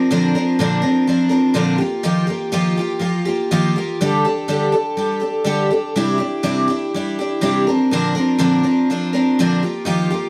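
A dry, close recording in a small room with a 1970s studio character puts a lone picked twelve-string acoustic guitar up front, its bright, shimmering, octave-doubled dreadnought tone ringing from Bb2 to Bb4. This short rock passage, cut from a longer piece, moves at 123 BPM in a straight 4/4, tuned to A4 = 442 Hz, and carries an open-road, nostalgic mood. The guitar plays alone for the full 10.3 seconds, cycling through Bbadd9, Ebadd9, Dsus4 and Cadd9 before returning to Bbadd9 and Ebadd9.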